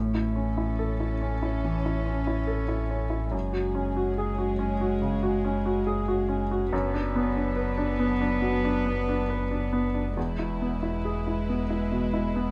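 A clear upright piano sits up front in this tender, intimate neoclassical piece for piano and strings, its woody tone carrying audible action noise and short sustain as it plays the accompaniment in A major at a rubato 70 BPM in 4/4. A rich, bowed solo cello floats a pure, soft-attacked second line alongside a close chamber string section holding sustained chords with light vibrato, while a deep sine sub bass with octave anchors the low end. Light reverb frames the harmony as it moves from A through F#sus2 and Bm/F# to E at 10.2 seconds.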